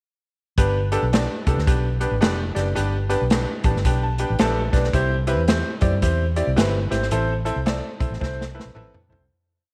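At 0.6 s, a bright concert grand piano, a muted fingered electric bass and a swinging big-band drum kit start together in a joyful, uplifting, uptempo 1960s-style soul groove at 110 BPM in G major, its swung feel moving from G to C to Am. The piano plays close-voiced eighth-note chords and adds a short fill at 3.3 s, while the dark, round bass carries a melodic, syncopated line with slides and chromatic approach notes under a punchy kick and a backbeat snare. Light reverb gives the drums an airy, polished hall sound as the music fades out, and a drum fill closes the piece at 8.2 s.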